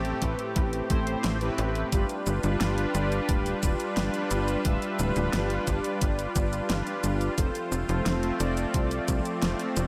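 Synthwave at 88 BPM in a straight 4/4, this cinematic, nocturnal fragment is cut from a longer piece and moves from Am7 to G7 at 1.9 seconds, settling on F at 7.4 seconds. A smooth, detuned analog pad sits up front with sustained chords, its vintage warble colored by chorus and pulled by sidechain pumping. Mellow synth brass stabs, round and dark with vibrato and a filter sweep, range from A2 to E5 through chorus and analog delay. Underneath, a tight sequencer bass drives with punchy sawtooth-and-square plucks that decay, also pumping to the sidechain, while an overdriven electronic kick knocks from 0.2 to 9.2 seconds. The pop kit adds a fat snare, warm hats and shaker, overdriven and re-recorded in a small room, all wrapped in a dreamy mix soaked in a lush hall reverb with a 3.0-second tail.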